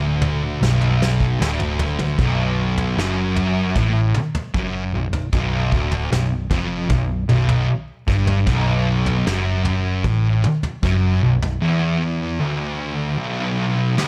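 Two thick fuzz guitars, one up front and one in the background, open this hypnotic, heavy stoner-doom excerpt on a low B-minor riff at 76 BPM in a straight 4/4, alongside a round, punchy, foam-muted vintage bass driven through overdrive. A soft brush kit enters at 0.2 seconds with a tight kick, medium-tuned snare and toms, playing a fill from 0.6 to 2.2 seconds and sounding smooth and rolled-off in a small room. The bass drops out at 11.6 seconds while the guitars and drums carry on under light reverb.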